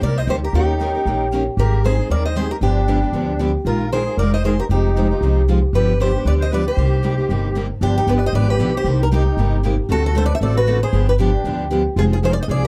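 Swung eighths drive this fiery excerpt of acoustic jazz manouche, where a bright, up-front picked archtop guitar carries the melody through tape echo, a reedy, shimmering musette accordion adds a second line, two picked steel-string acoustic guitars (one warm, the other set in the background with audible finger squeak) supply the accompaniment, and a woody, thumpy pizzicato upright bass sits up front, within a dark production lightly touched by reverb.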